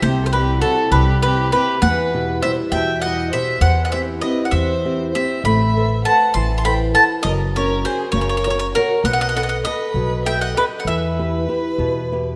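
Flowing in a rubato 6/8, this wistful, romantic Italian folk serenade excerpt sets a bright, double-strung bowl-back mandolin up front on the melody, a rich, smooth violin with vibrato sounding distant on the second line, a fingerpicked flamenco guitar with audible finger squeak as accompaniment, and a woody, thumpy pizzicato upright bass on gut strings up front underneath, in a moderate concert-hall reverb as the harmony moves from C through F# and B7 to a closing Em.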